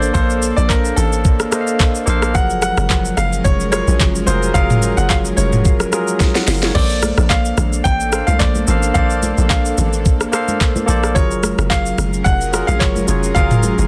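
Amapiano at 109 BPM with a relaxed, soulful swing, built on Bbmaj9 and Gbmaj9 chords: a brilliant grand piano carries the melody through digital delay, while a barky, clean tine electric piano comps and an airy, warbling pad sits in the background with chorus and sidechain pumping. Underneath, a tight, punchy log drum bass drives the low end against an up-front, tape-warm electronic drum kit with knocking kick, sharp snare, metallic hats, handclaps, rim clicks and shaker. A drum fill at 6.2 seconds ushers in very quiet, ringing congas, all set in digital ambience with a dense, heavily limited modern master.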